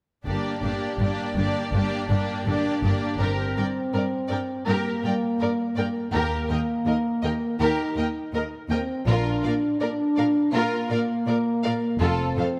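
In a steady, straight 4/4 at 82 BPM, this cinematic, epic orchestral film cue in G minor carries a dramatic, heroic mood, cut from a longer piece. From 0.3 s the bowed string sections sound together: a clear, intense violin line in a supporting role, focused violas filling the accompaniment, a rich cello bass with a smooth top, and distant, even double basses anchoring the low end, all with vibrato. At 2.5 s a mellow French horn section arrives up front, holding sustained chords in a classical style. The main melody enters at 3.2 s in a lush violin section with a soft attack and expressive vibrato, sitting in the background of the mix. The harmony moves from G minor through E-flat and B-flat to F, and a moderate scoring-stage reverb gives the ensemble a sense of space.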